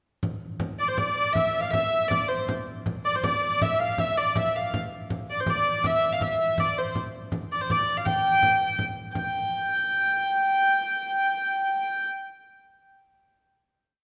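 A dark, woody hurdy-gurdy carries a modal melody with ornaments, played up front by a single player from 0.8 to 12.1 seconds, with a final note from 9.2 to 11.3 seconds closing this short medieval dance in 3/4 at 162 BPM. Beneath it, a small, bright frame drum struck with hard hands keeps an evenly spread pattern from 0.2 to 9.3 seconds, sitting close but lower in the mix. A moderate concert hall reverb lends the piece an ancient, mysterious air.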